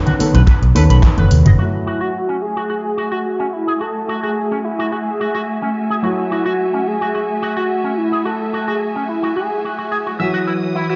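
A straight 4/4 nu-disco groove at 108 BPM opens this sensual, sleek fragment in F# dorian: a dry, tight acoustic kick sits up front beside a layered, overdriven electronic house kit of handclaps, hi-hat and toms, with soft-handed vintage congas in the background and a punchy, amped fingered bass whose envelope filter gives it a bright bite. That rhythm section plays only in the opening 1.6 seconds, closing with a drum fill, while a dark, worn grand piano with audible action noise supplies intimate accompaniment under sidechain pumping. A clean, twangy picked electric guitar with its own envelope filter carries a riff through subtle chorus and a low-pass filter that sweeps across the longer second section. From 1.6 seconds a lush, bowed string ensemble holds sustained chords with vibrato, pumping and filter-swept. At 1.9 seconds a thick, nasal, detuned unison lead takes the melody with a fast attack, cassette-tape coloring and dub echo, over harmony that moves from B9 to F#m9 and finally Emaj7sus2. 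A moderate hall reverb and the sound of a big system in a bare room give the mix a roomy, top-trimmed glow.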